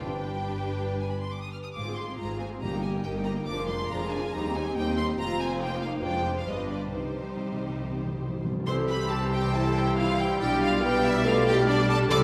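Graceful and lively, this quick classical-period movement for symphony orchestra runs at 139 BPM in a straight 4/4, starting in C minor and brightening to C major at 8.7 s. A clear, smooth violin section carries the melody with even vibrato, while a lush second violin section adds an expressive second line in the background. Violas and cellos give focused, bowed support, with the cellos joining an intense, clear double bass section on the bass, and a mellow French horn section holds sustained chords throughout. Timpani played with hard mallets sound articulate and close and dry, with a fill from 6.9 s leading into the major-key passage. From 8.7 s a pure, straight-toned flute and a distant, roomy oboe add second lines, and a very quiet bassoon lends soft accompaniment. A wet recital hall reverb surrounds the ensemble, and the passage is cut from a longer piece.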